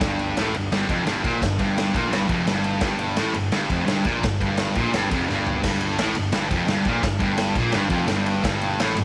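Menacing and swaggering, this short garage rock excerpt in G minor charges along at 171 BPM in a straight 4/4, with a thick, double-tracked fuzz guitar riff up front, a growly overdriven picked bass sitting in the background, and a raw, saturated acoustic drum kit in a pumping stone room hitting crash, ride, kick, snare and toms, including a quick drum fill at 5.3 seconds, all under light reverb.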